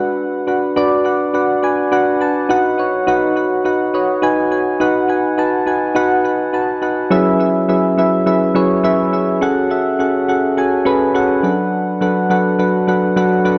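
Urgent and dramatic, this pop excerpt moves at 104 BPM in 4/4 with a light 16th-note swing, tuned slightly below standard pitch. A single soft, electric-piano-like synth keys part carries the whole piece alone from 0.0 to 13.6 seconds, ranging from F#3 to A5. Its tone is round and mellow, with a detuned shimmer, a quick attack and decaying notes, colored by chorus and placed up front. The harmony moves from B minor to B major, then shifts to C#m7/F# at 7.1 seconds and F#madd9 before settling on Bm7/F#. A short keys fill at 3.6 seconds leads into the next section, and a lush hall reverb gives the sound a spacious, lingering tail.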